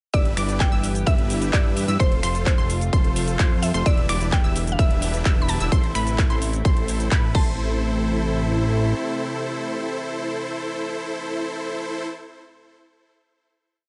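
Lightly reverberant and rolled off at the very top, this short festival progressive house piece opens straight into an emotional, euphoric drop, driven by a layered, tape-warm electronic kick pounding four-on-the-floor up front beside a big-room dance kit of metallic hats, finger snaps, handclaps, shaker and crash. Huge, detuned supersaw chords play a dotted-rhythm riff with digital delay, a fat analog bass follows the chord rhythm, a lush unison pad holds airy, soft-attack chords in the background, and a bright sawtooth unison pluck doubles the chords an octave higher in decaying, delayed arpeggios, with the pad, both synth riffs and the bass all pumping with the sidechain. Over this, a woody, round, FM mallet-like pluck carries a motif-based melody with chorus, 12-bit sampler grit and digital delay; the drums stop at 7.4 s, the bass at 8.9 s, and the remaining synths ring through the final hit to 12.3 s.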